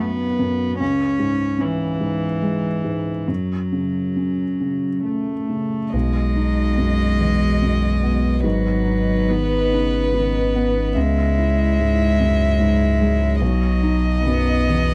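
A dry, close recording with a 1970s studio intimacy frames this fragile, longing neoclassical piece in C# minor, moving in a rubato 3/4 at around 67-76 BPM. A felt-muted upright piano, mellow and with its action noise audible, carries the accompaniment, while a rich, floating cello played sul tasto sings a second line from the start. At 5.9 seconds a round, deep sub bass and an airy violin melody with light vibrato enter, and from 7.1 seconds a very quiet, warbling tape-like pad adds nostalgic, lo-fi, detuned chords with chorus.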